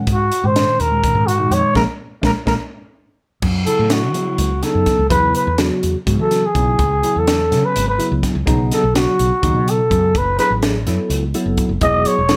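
Straight eighths in 7/8 at 250 BPM propel this nocturnal, slick electric jazz fusion excerpt, where a crisp, gritty drum kit with a high-tuned snare and punchy kick sits under a round, growly fretless bass, a clean tine electric piano through a phaser, and a growling trumpet carrying the melody, until a band accent at 1.7 s and a drum fill give way at 3.4 s to F# dorian and an up-front, raspy, breathy trumpet solo with slapback echo, all within light reverb.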